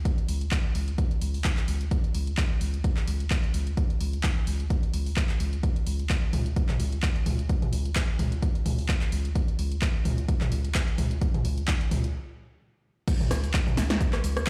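Blasted through a big sound system into a bare stone room, this raw, playful acid house cut at 129 BPM with a light 16th-note swing pairs an overdriven, punchy analog kick sitting up front with a gritty drum machine of cabasa, crash cymbal, handclaps, hi-hat, rim click, toms and a punchy snare, its snare, clap and hats carrying a short room, all over a thick, deep triangle sub bass around Db2 that stays up front with tube saturation and sidechain pumping, before a stop at 12.1 seconds gives way to the drop at 13.1 seconds.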